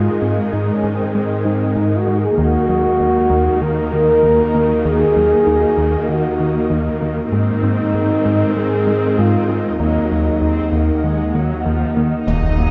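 Mellow French horns hold sustained chords up front over an ethereal, detuned pad, a glassy pluck arpeggiating with chorus and delay, a rubbery square-wave bass riff and lush bowed violas and cellos in this relentless, vast hybrid orchestral and electronic cue at 97 BPM in Eb dorian, moving between Ab and Ebm, until at 12.3 seconds a faint violin note, saturated sub bass, double basses and a distant electronic impact arrive on a scoring stage with moderate reverb.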